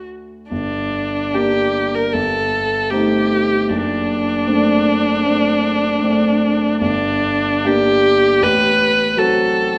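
A single bowed viola carries the melody up front with a rich, smooth and even tone and vibrato, singing a yearning, melancholic line in this romantic classical duo. A warm grand piano, also present and polished, supports it with accompaniment that spans from deep bass into the middle register. The unhurried rubato and the lingering recital hall reverb give this brief excerpt a spacious, wistful character throughout its 9.8 seconds.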